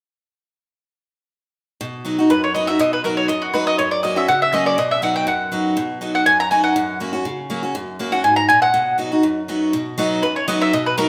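A mellow, woody mandolin carries the melody up front from 2.3 seconds, its doubled strings ringing over a bright picked steel-string acoustic guitar that opens the accompaniment at 1.8 seconds with audible finger squeak, in a joyful, driving bluegrass excerpt at 242 BPM in B major with a light swing, captured live in one room with a wet, large studio reverb.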